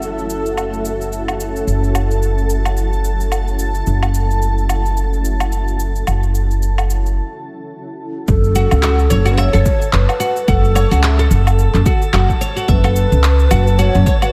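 Lightly reverberant and earthy, this hypnotic organic downtempo excerpt in F# minor moves at 109 BPM with a 16th-note swing, as a woody, thumpy pizzicato upright bass sits up front beside overdriven electronic cabasa, woodblock and handclaps in a small room, under a blurred, evolving granular pad that pumps and shimmers with chorus over an F#m7 chord. After a break from 7.2 seconds, the pad stops at 8.3 seconds and the harmony settles on F#m as a punchy, overdriven electronic kick and a breathy, hollow low ney with vibrato and delay enter. A deep, fretless oud plucks delayed arpeggios with a plectrum, while a calm, glassy texture of drifting overtones hovers quietly in the background.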